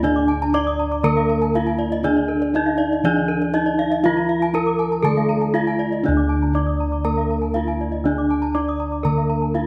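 A straight 4/4 pulse at 120 BPM carries this shimmering, ceremonial Balinese gamelan passage in D pelog, cut from a longer piece. An up-front bronze metallophone struck with a wooden mallet carries the melody with a vintage, band-limited ring, while a lower metallophone plays the accompaniment and round, beating bossed gongs hold the bass. Two bright, horn-mallet metallophones spin arpeggios above, the second entering at 0.2 s, its paired tuning adding shimmering beats inside a wet recital-hall reverb.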